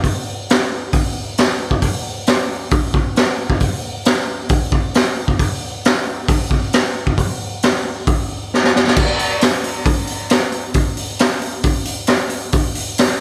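Dark and brooding, this raw garage rock drum kit excerpt at 134 BPM in a straight 4/4 features kick, snare, hi-hat and crash cymbal up front in a small room with light reverb, its saturated, gritty sound pairing a boomy kick with a high-tuned snare and a rolled-off top, and a drum fill at 8.5 seconds carries it into a new section at 9.0 seconds.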